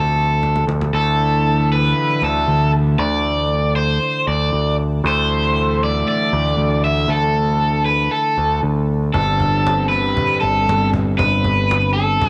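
Cool and restless, this indie rock cut from a longer piece moves at 117 BPM in a straight 4/4, its raw garage guitar carrying an up-front, overdriven melody with a bright bite and the grain of cassette tape, matched by a warm, overdriven picked bass up front. Beneath them, a distorted electric guitar picks a tape-worn riff in the background while a dark, clean, fingered electric guitar plays a compressed riff very quietly, all under light reverb in a home cassette recording. A woody cajon with faint snares enters at 0.2 seconds and plays a fill from 0.4 seconds, drops out, then returns at 9.1 seconds as the harmony shifts from Dsus2 to Gsus4.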